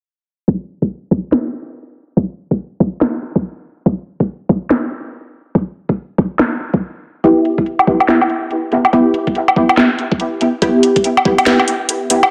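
A dense, heavily limited mix bathed in spring-style digital ambience carries this heavy, dark deep dubstep excerpt in E minor at 142 BPM with a swung half-time feel: an overdriven, knocking electronic kick sits up front from 0.5 seconds, a tape-tinged garage kit of cracking snare, metallic hi-hat and woodblock joins at 1.3 seconds, a filter sweep runs throughout, and a muted, nasal sawtooth chord stab with a filter pluck, phaser, ensemble chorus and dub echo arrives at 7.2 seconds.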